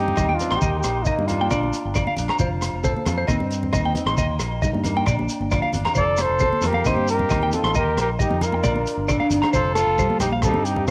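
This short cut from a longer piece sounds like a home recording on cassette, caught in a small room. It is a danceable, joyful highlife guitar band groove in a straight four, cycling through a repeating chord loop. A dark, veiled bucket-muted trumpet carries the vintage, jazz-style melody up front, with vibrato and scooped notes, while a warmer trumpet sits behind it on a second line. Both horns break off at 1.9 seconds and return at 6.0. A fingerpicked nylon-string guitar with fresh strings plays steady accompaniment, and a twangy, compressed clean electric guitar picks high arpeggios soaked in spring reverb and tape echo. Underneath, a round fingered electric bass and a gritty, saturated breakbeat kit with a rolled-off top, a punchy kick, hi-hat and rim click hold the beat, the kit playing a fill from 5.4 seconds. High-tuned congas, grainy shekere, ringing distant agogo bells and a very quiet, hollow flute section holding sustained chords fill out the background.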